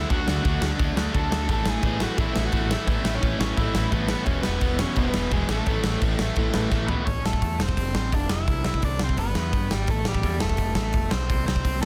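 A punchy, up-front big rock drum kit in an airy stone room drives this upbeat, energetic punk rock cut at 172 BPM in A major alongside a double-tracked, compressed distorted guitar riff that drops out at 7.1 seconds after a drum fill, a warm overdriven guitar melody trailed by tape echo, and a bright, direct picked bass, with little reverb in a dense, heavily limited mix.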